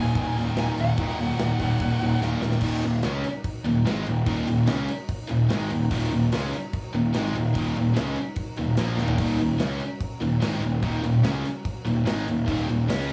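Epic and dark, this straight heavy metal passage cut from a longer piece opens with a dark, high-gain lead guitar melody that stops at 2.2 s, while three bright, picked rhythm guitars (one overdriven, one double-tracked, both in the background, alongside a distorted high-gain one) churn out riffs over a growly, fuzz-laden bass up front, a very quiet, lush bowed string section holds sustained chords beneath, and a big acoustic kit with bright cymbals and a punchy kick drops fills at 2.2 s and 9.0 s, all captured with a small-room, cassette-tape character and little reverb.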